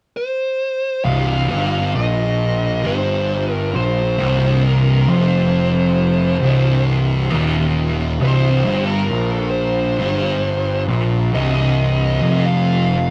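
Sludgy and ominous, this slow metal excerpt at 67 BPM in C minor opens with a dark, compressed fuzz lead guitar under wah and distortion at 0.2 seconds, joined by a bright, growly overdriven picked bass at 1.0 seconds and, from 1.1 seconds, two thick fuzz rhythm guitars holding a low Cm riff, one dark in the background and one up front, all caught in a rough rehearsal-room sound with tube saturation and moderate reverb.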